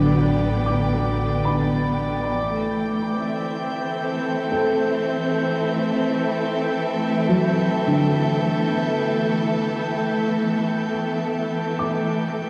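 Ambient piece in A minor at 76 BPM, serene and melancholic, cut from a longer work and set in a lush hall reverb with a dark production: a clear, focused symphonic string section holds sustained bowed chords up front while a felt-muted upright piano plays soft, intimate arpeggios with audible action noise and a diffuse ambient delay. A bowed double bass section adds a warm, vibrato-rich low A under the opening G/A chord until 2.3 s, before the harmony settles on A minor at 2.4 s. Above it all, a glassy, chorused glass-harmonics texture drifts with slow-attack, sustained overtones through to 12.5 s.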